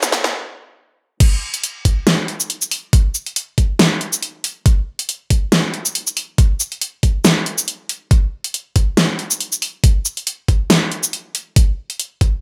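A brief drum fill on the overdriven dubstep kit, with its huge snare, bright hats, crash and shaker, opens this menacing, chaotic dubstep excerpt and is followed by a stop, together forming a short build-up before the drop lands at 1.2 seconds. From there a knocking, overdriven electronic kick sits up front beside the layered kit in a swung, half-time 4/4 groove that runs to the end at 12.3 seconds. Both drum parts carry the close character of a small room, with a light reverb and a high-pass filter shaping the overall sound.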